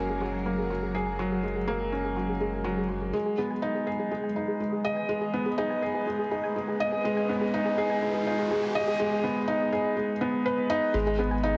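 A felt-muted upright piano sits up front with an intimate, mellow riff, its action noise audible and its notes trailing a delay, in this hypnotic, moving piano-and-strings electronica excerpt at 123 BPM in G# minor. Beneath it, a deep, nasal analog bass with tube saturation holds the low end, a granular pad drifts cloudy and blurred in the background, and a very quiet, detuned pluck with chorus traces arpeggios. The harmony moves from F#add9 to G#m at 3.1 seconds, where a build-up begins, and an electronic riser runs from 4.7 to 9.0 seconds inside a huge ambient reverb.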